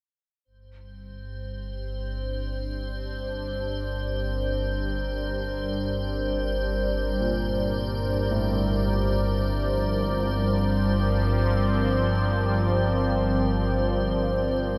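A sweeping, detuned sawtooth pad fades in at 0.5 s with sustained chords moving from Gm to Bbadd9. It is joined by an ominous rumbling drone, up front and treated with phaser, and then by an icy, crystalline glass pad, before a polished grand piano enters in the background at 7.2 s with arpeggios trailing into diffuse delay. Everything is set in a huge cavernous reverb for a dark, slow ambient drone cut from a longer piece.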